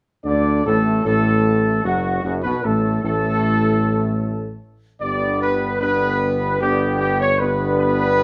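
A dark, punchy trumpet section carries the melody up front, its tight, roomy tone sounding slightly distant as it leads this solemn, regal ceremonial fanfare in classical style. Beneath it, a bright trombone section holds sustained chords with a loose ensemble feel. A mellow French horn section adds further sustained harmony from the background, its smooth top and light vibrato softening the brass texture. A tuba with a soft attack anchors the bass, all four parts sounding together from 0.2 to 8.2 seconds in an unhurried triple metre. The harmony moves from D to G at 5.0 seconds, and light reverb gives the passage, cut from a longer piece, a stately sense of space.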